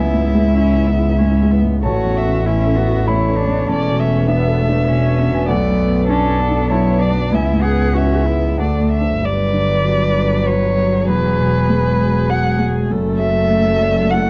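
A muted violin, cello, viola and double bass, each a single bowed player con sordino, open this tender, intimate neoclassical piece for piano and strings together with a dark concert grand, all sounding from the first moment of a fragment cut from a longer work. It moves at 98 BPM in a rubato 3/4, with the violin carrying a veiled, vibrato-tinged melody between A4 and F#5 while the close-sounding cello sings a second line beneath it. The piano supplies accompaniment across a broad span from A1 to B5, its tone mellow and slightly boxy with deep bass and long sustain, joined by the viola's soft-attacked, smooth-topped inner voice with light vibrato. The double bass sits up front, its soft attack and vibrato anchoring the low end. The harmony drifts from C#m7 through A, E7sus4 and Bm7, then at 9.2 seconds turns toward Gmaj7, Eadd9 and Dadd9/F#, giving the closing phrase a gently shifted colour. 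Light reverb and a dark, warm production with nothing above 7.9 kHz keep the whole sound hushed and close.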